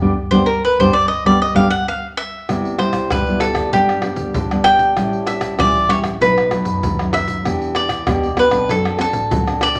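Samba and choro with a lively, bittersweet mood, this passage cut from a longer piece opens with a crisp, bright cavaquinho solo entering at 0.3 seconds over a band accent, before the harmony moves from G through Cmaj7, A7 and B7 toward Em7 and D7. The picked cavaquinho melody sits up front beside a full-bodied nylon-string guitar whose fresh strings carry thumb-plucked accompaniment with audible finger squeak, while a dark, very quiet bowed double bass adds a soft-attack, sul tasto line with light vibrato underneath. Tight surdo, egg shaker, pandeiro and tamborim sound close and dry, all set in a moderate, large studio reverb.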